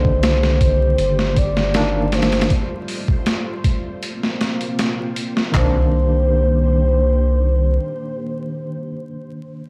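A round, deep analog bass with tube saturation sits up front in this dark, smoky 79 BPM trip hop fragment in C dorian, joined by a gritty boom bap sampler-style kit with thumpy kick, high-tuned snare, handclaps, hi-hat and toms that drops out at 5.7 s, a barky tine electric piano with tremolo, full-bodied string-machine cellos under ensemble chorus, and a pure, breathy sine lead gliding between C5 and D5 through chorus and tape echo, all colored by light reverb, cassette warble, pitch drift and vinyl crackle.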